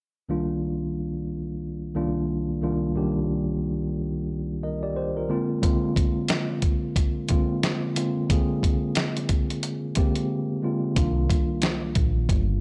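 Boom-bap hip-hop in C minor at 90 BPM with a swung 4/4 feel, dark and moody, opens on a mellow tine electric piano through cassette tape moving from Cm11 to Bb9, joined at 5.6 seconds by a dusty, thumpy sampler-style drum kit with a compressed, gritty edge, which falls silent from 10.3 seconds and returns at 11.0 seconds as a deep, round fingered electric bass enters and the Cm11 comes back, all in a dry, gritty hardware recording cut from a longer piece.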